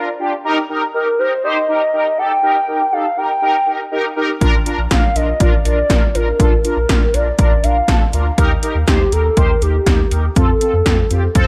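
A hollow, woody clarinet-like synth lead carries the melody in this upbeat, wistful synth-pop excerpt, its soft tone colored by vibrato, chorus and tape echo over mellow synth brass thick with detuned sawtooth and shaded by chorus and phaser. At 4.4 seconds, punchy 80s electronic pad drums arrive up front with a gated snare and metallic hats, joined by a round, deep analog bass. Light reverb gives the straight 4/4 groove some air as the chords move from Eb to Bb, back to Eb and on to F.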